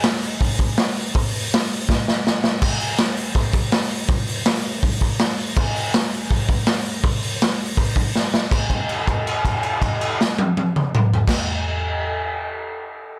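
A straight 4/4 rock beat at 162 BPM drives this gritty, raw cut from a longer piece, played on a lone acoustic garage drum kit of kick, snare, hi-hat, toms and crash cymbal. The kit sits up front in a small, pumping room with little reverb, its saturated tone marked by a punchy kick, medium-tuned snare, dark cymbals and a rolled-off top. Drum fills land at 1.9 and 8.2 seconds, and the second leads into a held note at 8.5 seconds that carries the close.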